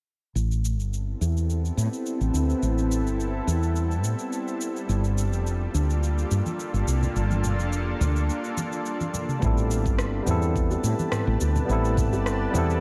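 Warm and relaxed, this sunset chillout excerpt drifts along in a straight, unhurried groove, cut from a longer piece and bathed in a moderate concert-hall reverb with a dark production. A woody fretless electric bass sits up front from the start, growly and round with a hollow-body character and a touch of ensemble chorus, while a tape-warm, produced R&B drum kit ticks along quietly with rim clicks, shaker and toms. At 1.0 seconds a shimmering ambient pad fades in with sustained chords, ethereal and detuned, its octave-up shimmer warbling through chorus and its own reverb as the harmony moves from Am9 to Gm9. Bright congas and bongos, played with soft hands and kept very quiet, join at 6.5 seconds, and after a brief break and drum fill the second section opens at 9.4 seconds back on Am9. There a barky tine electric piano steps forward, lightly overdriven through a combo amp and echoed by digital delay, as a knocking electronic kick drum adds weight underneath.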